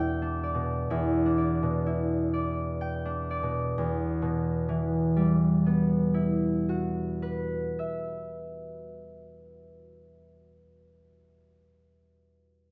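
A concert harp plays alone, up front and ringing, in this short classical excerpt cut from a longer piece. The mood is gentle and mysterious, set in E minor at a slow 43 BPM in 4/4 with a rubato feel, and the tuning sits at A4 = 436 Hz. The fingerpicked harp spans E2 to G5, its warm, acoustic tone resting on an Em7 chord that slows down through the opening 3.8 seconds. At 3.8 seconds the music moves into a new section over Emadd9, and the harp carries on until 10.8 seconds. A wet recital hall reverb with a 1.5-second decay surrounds the harp and lends the quiet playing a sense of space.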